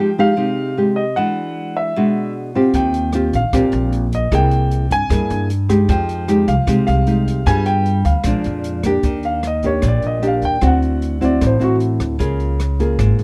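Bossa nova at 152 BPM in 4/4 with a relaxed, romantic mood, cut from a longer piece and opening on a thumb-plucked, classical-sounding nylon-string guitar up front under a warm concert grand piano melody over chords like Fm9 and E9. At 2.7 s a woody, growly pizzicato upright bass and a dark, smooth jazz kit with a boomy kick, rolled-off top, hi-hat and rim click join in, and from 9.0 s the piano takes a solo over Ebmaj7, D9 and Db6. The sound is a dry, close 1970s-style studio recording with small room ambience.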